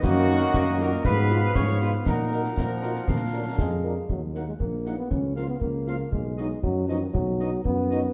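A stern, martial wind-band march in Eb minor at 118 BPM in 2/4 opens at once with a soft-edged trumpet section carrying the melody over an up-front, mellow tuba bass, concert snare, clash cymbals with dark cymbal tone, and concert bass drum, while a vibrato-rich vintage euphonium, a distant woodwind section and a pure wooden piccolo weave second lines. Clear trombones hold background chords and a very quiet, dark French horn section slips in at 0.3 s to accompany. The piccolo drops out at 3.8 s and the trombones at 4.1 s, leaving the rest to carry this fragment of a longer piece through a moderate scoring-stage reverb.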